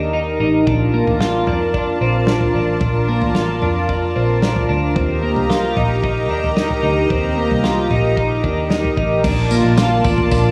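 A floating, blissful dream pop excerpt in a straight 4/4, built on a lush, thick, detuned pad with chorus that sits up front holding sustained chords over Eb and Bbmaj7. A bright, twangy twelve-string electric guitar plays clean picked arpeggios through subtle chorus and digital delay, while a dark, round, foam-muted vintage bass anchors the low end and a loose indie drum kit with a punchy kick, snare, toms, tambourine and crash enters at 0.7 seconds. Near the close, at 9.8 seconds, a mellow vibraphone with soft mallets rings briefly in the background through digital delay, all set in a moderate concert hall reverb.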